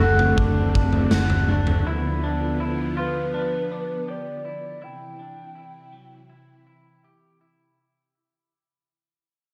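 Up-front string-machine violas hold mellow sawtooth chords through this dreamy, blissful dream pop fragment, joined by a warbling, vibrato-laden lead melody, twangy compressed clean guitar arpeggios with subtle chorus and analog delay, a round, foam-muted bass, and a gritty, saturated garage drum kit with punchy kick and toms, the bass and drums dropping out at 1.8 s as the harmony moves from D7/F# through G7 to C in an echo-heavy chamber-reverb mix that fades out from the start.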